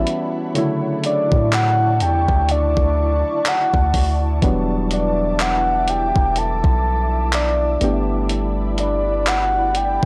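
A dry, gritty cassette-tape sound frames this sensual, longing slice of contemporary R&B, cut from a longer piece and moving at a slow, swung pace. Gated 80s digital drum machine enters at 0.1 seconds with a thumpy kick, hi-hat and handclaps, its sampler-style hits sitting up front with gated reverb and a tape-tinged, small-room character. Beneath it, a long sustained 808-style bass gives deep, sine-like notes with a fast attack that decay mellowly, also placed up front. Soft electric-piano-like synth keys supply round, gently detuned accompaniment with chorus and a filter sweep, while an ethereal, airy pad holds warbling, vintage-sounding chords with ensemble chorus and its own built-in reverb. Over the top, a soft octave-layered synth lead carries the melody in a full, dark tone with vibrato, chorus and analog delay, drifting through harmonies that move from a rootless A13 to Dmaj9, Em9 and finally A9sus4 at 7.8 seconds.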